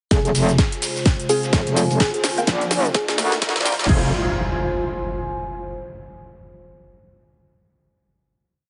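Bass house at 127 BPM in F dorian, this short, aggressive and bouncy piece builds from its opening moment toward a final chord at 3.9 seconds, moving from Fm to Bb and back to Fm over a swung 16th-note groove. A punchy, tape-warm electronic kick drives a four-on-the-floor pulse up front, joined by a house kit with a cracking snare, metallic hats, shaker and crash, while a dusty, sampler-style breakbeat loop with edits and a fat snare sits very quiet in a large room underneath. The loudest melodic voice is a saturated FM wobble bass with chorus and sidechain pumping, playing modulated phrases whose wobble speed changes. A sparkling, bell-like electric piano with tremolo, cassette tape and tape echo plays short mellow phrases in the background, and from 1.3 seconds band-passed, nasal sawtooth stabs with phaser and 12-bit grit move one chord shape in parallel. A resonant, evolving pad with a filter swell, a dark and nostalgic warbling lo-fi pad, and a riser and impact that carries through the final chord round out a heavily compressed, radio-like mix bathed in a lush hall reverb.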